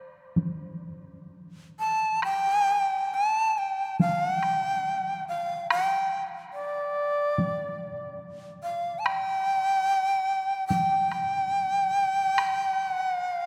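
Japanese traditional chamber music, austere and calm, moves at a loose, rubato 71 BPM in 4/4 with uneven beats. A taiko ensemble enters at 0.4 seconds, struck with heavy sticks and heard close, dry and up front, and it falls silent at 12.6 seconds. The shakuhachi carries the melody from 1.8 seconds to the end, ranging from D5 to A5. Its end-blown bamboo tone is breathy and reedy, with vibrato, tongued attacks and a distinct chiff, captured close and placed prominently forward. A long cathedral reverb with a 5.3-second decay surrounds the performance, lending a vast, resonant space to this fragment cut from a longer piece, which is tuned slightly low at A4 = 438 Hz.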